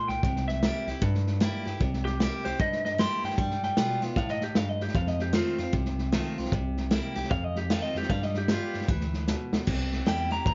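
Retro and rowdy, this swinging rockabilly excerpt features a twangy, slightly broken-up electric guitar through a small old amp taking a clean solo with tape echo over a bright, full-bodied picked dreadnought acoustic guitar, a bell-like tine electric piano carrying the bass line, and a muffled, lo-fi vintage drum kit with dark cymbals and a punchy kick that throws in a fill at 9.3 seconds, all moving through dominant seventh chords in a lightly reverberant, rolled-off sound.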